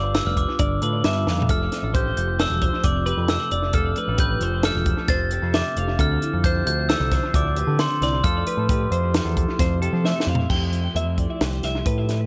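Set in a small, echo-heavy room, this bright, wistful slice of math rock and midwest emo moves in a straight 5/4, cut from a longer piece. A glockenspiel played with soft plastic mallets carries the bell-like, ringing melody through tape echo until 10.0 s, over a dark, fingered electric guitar washed in phaser and echo and a clean, twangy twelve-string electric guitar picking arpeggios. A round, punchy picked bass sits alongside an up-front compact cocktail drum kit with a high-tuned snare and dark cymbals, whose fills at 1.3 s and from 10.0 s lead into a brief closing section.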